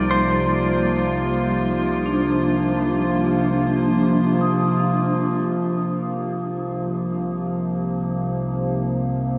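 Ambient music in free time, spacious and melancholic, built on a single Ebmaj9/C chord and steeped in a huge, wet reverb. Up front, an evolving wavetable pad holds sustained chords with a morphing, warbling, detuned vintage tone, slow attacks and long releases, thickened by chorus, with a filter sweep moving over it from 5.5 seconds. A clean electric pedal steel guitar, played with fingerpicks and slide, sings a compressed melody in volume swells through tape echo until 4.5 seconds. Vibraphone with medium mallets rings out metallic arpeggios with a fast motor vibrato, also trailed by tape echo, while a round, deep, dark analog bass sits in the background. At 7.4 seconds a very quiet, warm analog drone with pulse-width modulation and chorus fades in beneath the pad, and the piece is cut from a longer work.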